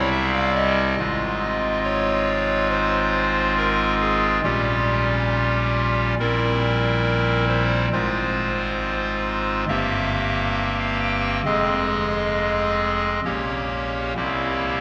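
Classical chorale-style music for pipe organ in F minor, solemn and dark at a rubato 68 BPM in 4/4, this passage cut from a longer piece features a solo chamber organ voiced on a hollow clarinet reed stop with audible chiff, sitting up front across a span from F1 to G5 and moving through chords such as Fm/Ab, Gm7b5/Bb and C7, all bathed in a wet cathedral reverb with a 4.7-second decay.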